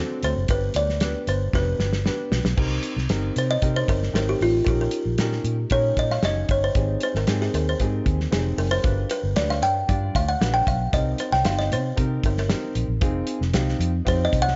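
Driving and passionate, this uptempo 1960s-style soul excerpt in C minor moves at 115 BPM in a straight 4/4, with a buzzing, woody kalimba up front carrying the melody and taking a solo from 2.6 seconds over chords running from Cm7 through Eb7/Bb, Abmaj7 and G7 to Fm7. A smooth, vintage baby grand piano supplies accompaniment, while a dark, round, punchy, foam-muted electric bass and a warm soul drum kit with a tight kick, dark cymbals and a medium-tuned snare sit close in the mix. The drums play a fill from 1.5 to 2.6 seconds, the recording carries a light reverb, and the top end is rolled off above 7.7 kHz for a mellow, period sound.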